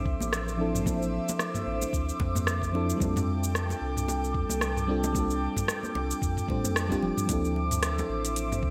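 A mellow FM electric piano provides accompaniment in this wistful, warm sunset chillout excerpt in D minor at 112 BPM, its soft, round, dark tone colored by chorus, delay and a filter sweep across the whole 8.7 seconds as it moves from Dm9 to F69 and back to Dm9 at 7.3 seconds. An airy, breathy pad with chorus and phaser sustains chords above it, while a deep sine sub bass, a knocking electronic kick and an up-front R&B kit with metallic hats, rim click, shaker, toms and gated reverb carry a 16th-note swing, with ringing hard-hand congas in the background. The bright 1980s-style digital production sits in a lush hall reverb.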